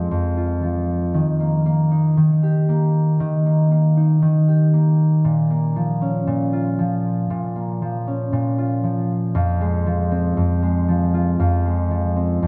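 Intimate and autumnal, this folktronica piece moves at 117 BPM in a straight 4/4, with a solo concert harp carrying everything from 0.0 to 12.5 seconds in F minor, ranging from F2 to G4. The thumb-plucked harp sits up front with a mellow, ringing acoustic tone, set in a light reverb. Its chords move from Fm through Eb and Bbm before returning to Fm at 9.3 seconds, where a new section begins, and the passage is cut from a longer piece.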